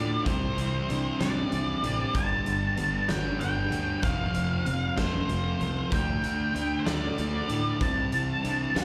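An up-front, dark octave-fuzz lead guitar carries the melody over a thick, distorted fuzz guitar riff, a growly overdriven fingered bass, background arpeggios from a picked acoustic archtop with audible finger squeak, and a huge arena drum kit with a fat snare and punchy kick entering at 0.3 seconds, giving this brooding, cathartic quiet-loud alternative rock excerpt in 6/8 the club-reverb sound of a live gig through the venue's PA as it moves through Cadd9, G, F and D5.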